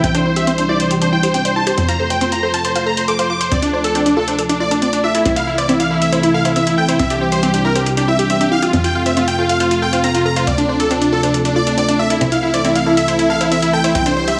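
A steady, straight pulse is kept by an electronic hi-hat with an analog, small-room grit, while a punchy, funky analog bass adds decaying filter-plucked notes in a low register. This is an emotional, euphoric slice of uplifting trance, cut from a longer piece, built on a looping progression of Cadd9, F, Dm7 and Am/C. Up front, huge, bright supersaw chords carry the melody through a low-pass filter and tape echo. Beneath them sits a thick, full-bodied unison pad with a slow attack, long release and warbling chorus, and a vintage detuned pluck spins echoing arpeggios, both moving through filter sweeps. A very quiet riser enters at 14.2 s, and a lush hall reverb wraps the whole mix.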